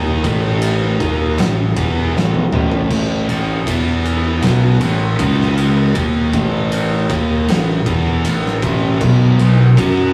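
Two thick fuzz guitars open this heavy, hypnotic stoner and doom metal excerpt at 79 BPM, one picked up front and the other sitting in the background, joined by a growling fingered electric bass with a bright, overdriven edge as the riff moves through power chords on A, E, C# and B. An oversized low-tuned acoustic drum kit enters at 0.2 seconds with a punchy kick, medium-tuned snare, dark crash and ride cymbals and toms, its gritty, saturated sound pumping in a big room, with a drum fill at 2.2 seconds. The rough rehearsal-room recording carries small room ambience and moderate reverb.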